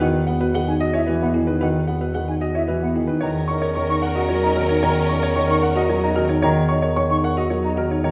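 Propulsive and hypnotic, this short classical excerpt of minimalist pattern music moves at 112 BPM in 3/4, shifting from Eadd9 to F#/E at 3.2 seconds. A clear, vintage grand piano with short sustain carries the melody over a dark, deep second piano, while a woody, rustic marimba with soft mallets and a pure, distant flute with vibrato spin arpeggios above a roomy bass clarinet holding E2. From 3.2 seconds a mellow clarinet adds a background line until 6.2 seconds, and a lush, bowed violin section lays down sustained chords until 6.3 seconds, all set back in a reverberant scoring stage.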